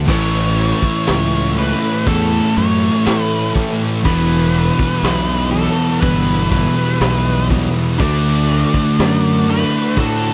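This is a dry, close recording in a 1970s studio style, with little reverb, heard as a short cut from a longer stoner and doom metal piece in a hypnotic, ominous mood. A growly, punchy fingered bass sits up front, overdriven with tube saturation, while two dark, thick fuzz guitars and a bright, double-tracked, tightly distorted guitar grind out the riff behind it. An octave-fuzz lead guitar, dark and picked, carries a melody through wah and distortion from 0.1 seconds onward. A raw garage kit in a small room, with a boomy kick, high-tuned snare, crash cymbal and a gritty, rolled-off top, stays in the background. Beneath it all, a very quiet string machine with a cello voice holds mellow, sawtooth chords with sub octave and ensemble chorus as the harmony moves from A to Em to D.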